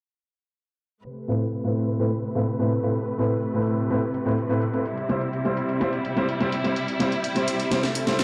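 Anthemic and emotional, this short festival progressive house passage is taken from a longer piece and moves in a straight 4/4 metre. A lush, bowed symphonic string section with vibrato holds sustained chords, moving from A minor add nine to C at 4.9 seconds. A clear, boxy grand piano sits up front with a short sustain, its accompaniment trailed by a digital delay. An electronic, layered house kit of hi-hat and a cracking, tape-warm snare runs beneath, with a drum fill near the end while a background electronic swell arrives at 7.9 seconds. A filter sweep runs through the whole passage, and the mix sounds as if played on a big sound system in a bare room, with large studio reverb and a low-pass filter dulling the top end.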